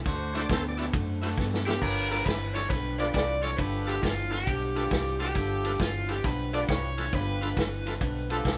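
Swaggering and gritty, this short electric blues shuffle swings in 4/4, with a warm, up-front soul drum kit, a dark, round, foam-muted fingered bass, a slightly broken-up lo-fi guitar riff, and clear horn stabs sitting in the background. A bright, shouting tonewheel organ with overdrive and a slow rotary speaker fills in the accompaniment. After a drum fill at 1.4 seconds, a raw, overdriven garage guitar takes the melody at 1.7 seconds and the band moves from D7 to G7 at 1.8 seconds, all captured live in one room with light reverb.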